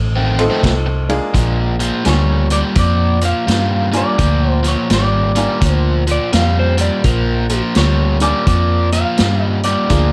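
A polished grand piano and a round, punchy muted bass open this swaggering, soulful electric blues shuffle at 84 BPM in Bb mixolydian, moving from F7 to Bb7, with a bright overdriven guitar riff and a gritty, dark-cymbaled vintage drum kit of kick, snare, hi-hat and ride joining within the first second. At 2.1 seconds a slightly broken-up, lo-fi lead guitar through a small old amp carries the melody, and a compressed slide guitar with tape echo adds a brief second line from 6.1 seconds. Light reverb sits over this swinging excerpt, cut from a longer piece.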